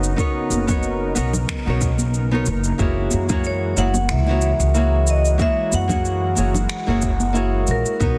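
A lightly swung groove of layered electronic shaker and finger snaps, with soft clipping on the snare, joined by a deep electronic kick drum at 0.2 s, carries this smooth sunset chillout excerpt, where a woody, thumpy upright bass with tube saturation sits up front, a fingerpicked nylon-string guitar with tape echo and a lush, detuned sawtooth pad with chorus hold Bmaj9 moving to F#9, bright, dry congas play in the background, and a metallic, ringing vibraphone with slow motor vibrato and tape echo takes the melody from 3.5 s in a small room.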